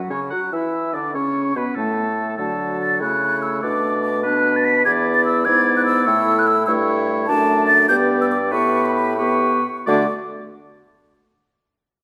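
This is a quick classical-period movement for wind quintet in 6/8, spirited and cheerful, with a rubato feel. An airy, hollow concert flute carries the tongued, vibrato-tinged melody high above the ensemble, while a vintage-toned oboe with light vibrato adds a second line just beneath it. A clear French horn and a smooth-topped clarinet fill out the accompaniment in the middle register, and a mellow bassoon sits up front on the bass. The harmony moves through classical-style changes such as Bm, E7 and G before settling on a D chord at 9.9 seconds. The ensemble slows from 6.7 seconds into that arrival, all of it set in a wet recital-hall reverb, in a short passage cut from a longer piece.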